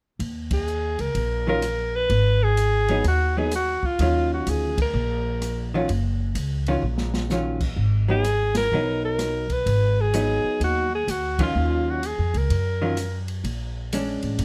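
Small-group swing and bop jazz with a cool, late-night mood, swinging in 4/4 in a close, dry, detailed room, cut from a longer piece. A woody, growly pizzicato upright bass and an acoustic kit with dark cymbals, a medium-tuned snare and a boomy kick play throughout. An up-front alto saxophone with light vibrato and a smooth top takes the solo melody from 0.5 seconds, and a clean, compressed, picked hollow-body electric guitar enters on accompaniment at 1.5 seconds, while the band hits shared accents, the drums play a short fill at 6.8 seconds, and minor-seventh and ninth chords close on a sharp-nine dominant.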